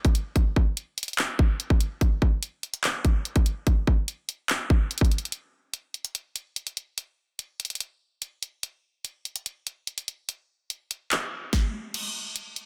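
An electronic trap drum kit sits up front, its hard-clipped kick, sharp snare, bright hi-hats, handclaps and crash cymbal carrying this melancholic, menacing hip hop fragment at 145 BPM in 4/4 with a half-time feel. The kit was re-recorded in a small room, yet carries little reverb, and the master is dense and heavily limited. The pattern shifts into a new section at 5.3 seconds and drops into a brief break at 11.9 seconds before this cut from a longer piece ends.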